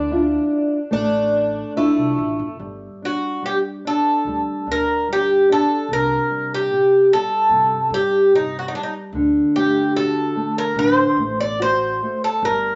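Rubato 4/4 at 74 BPM, this passionate, longing fado-style ballad in G harmonic minor, cut from a longer piece, sets a mellow, metallic, double-strung Irish bouzouki melody up front over a dark, small-sounding thumb-plucked nylon-string guitar and a woody, growly pizzicato upright bass, while a shimmering, octave-doubled twelve-string acoustic guitar adds a boxy, swinging picked second line until 2.6 s, the whole sitting in a wet studio reverb with a soft, rounded top end.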